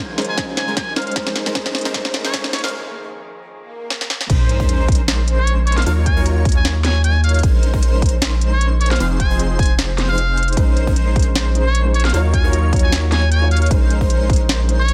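Very quiet chamber strings, rich and earthy with light vibrato, hold sustained chords under a punchy, mellow supersaw stab riff as this future bass excerpt opens, its lush, bittersweet mood set from the first bar. A trap kit with a sharp snare and crisp hats, a layered electronic kick, a faint riser and swell, and a filter sweep build tension alongside a soft, felt-muted upright piano with audible action noise and a brilliant, buzzy metal-muted trumpet carrying a jazz-style melody with delay. The strings drop away at 4.3 seconds as the drop lands with an impact, a deep, saturated sub bass sitting up front and an airy, dreamy lead spinning chorused arpeggios with vibrato. The half-time, lightly swung groove pumps the bass, stab, trumpet, lead and piano against the kick, while the muted trumpet returns as a solo voice over the Ebm9, Bbm11 and Fm7 changes. The dark, intimate piano comes back in the background at 10.6 seconds, and the whole is mastered dense and loud with a light reverb.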